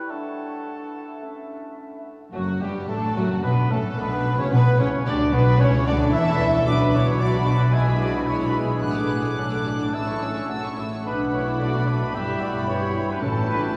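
Graceful and lively, this dramatic romantic orchestral passage, cut from a longer piece, opens with mellow clarinet, solo cor anglais, clear bassoon and a hollow, pure-toned flute before the strings enter at 2.3 seconds: lush violins carry the melody over a smooth second violin line, very quiet violas, dark cellos with expressive portamento and a bowed double bass section, joined by a very quiet French horn section holding chords, distant trumpet stabs and brief, dry timpani touches, all set within a wet cathedral reverb.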